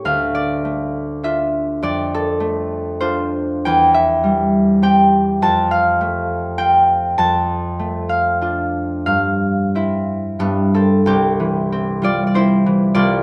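Peaceful and dreamy, this short classical cut from a longer piece features a solo concert harp in C major. The tempo drifts between 90 and 104 BPM in a rubato 3/4, giving the phrases a gently flexible, unhurried lilt. The harp is fingerpicked, with a bright, ringing tone that sits up front, and its range stretches from C2 up to A5. Harmonies move from D minor through F and C, leaning on G before settling onto C at 11.1 seconds, where a new section begins and carries through to the close at 13.2 seconds. A light reverb adds a soft sense of space around the plucked strings.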